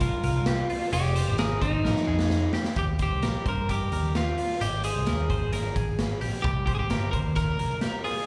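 An up-front electric guitar, slightly broken-up and compressed, carries the melody with slapback echo and analog delay in this youthful, breezy snippet of jangly indie pop at 131 BPM in a straight 4/4. Beneath it, a clean, twangy twelve-string electric guitar picks bright arpeggios through the same slapback and analog delay. A dark, round, foam-muted picked bass anchors the low end, while a raw garage drum kit with a boomy kick, medium-tuned snare and hi-hat sounds gritty and saturated, its top rolled off and its room pumping. A drum fill from 1.9 to 2.8 seconds leads into the second section, where the chords move from Ebadd9 through Abmaj7 to Cm7. The whole thing comes across like a live gig heard through a venue's PA, with just a touch of club reverb.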